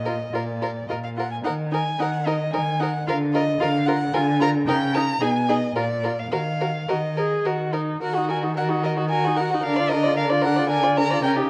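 An expressive first violin with vibrato and portamento carries the melody up front in this urgent, stormy string quartet fragment from a quick classical-period movement in Eb minor at 111 BPM in a rubato 3/4, over a smooth, even second violin, a focused viola accompaniment and a rich, prominent cello bass, all set in a moderate large-studio reverb and coloured by worn cassette tape with a warbly pitch drift, with a new section arriving at 8.0 seconds.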